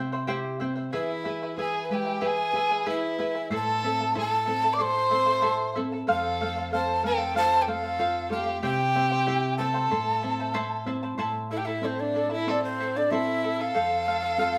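A breathy, mellow large quena carries the melody up front from 1.0 s, its wooden tone marked by a crisp chiff, rolled-off highs, vibrato and a slightly unsteady quality, in this earthy, melancholic Andean folk piece. A single bowed violin with a smooth, even vibrato plays a second line beneath it from 0.9 s, while a fingerpicked charango with shimmering double strings and a warm, thumb-plucked classical nylon-string guitar provide the accompaniment. The ensemble sounds as if playing live together in one room, wrapped in a wet studio reverb, and the passage moves into a new section at 11.2 s before it is cut from the longer piece.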